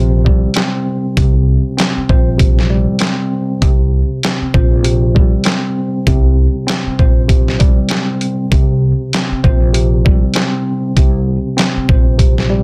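A gritty, sampler-style drum kit sits up front in this moody boom-bap hip-hop excerpt at 98 BPM, its thumpy kick, medium-tuned snare, hi-hat and handclaps compressed and swung on the sixteenths, entering at 0.3 seconds. Alongside it a woody, pizzicato upright bass anchors the low end, while a worn, slightly out-of-tune tine electric piano, lightly overdriven and filtered as if through built-in speakers, supplies the accompaniment. The sound is dry, dense and heavily limited.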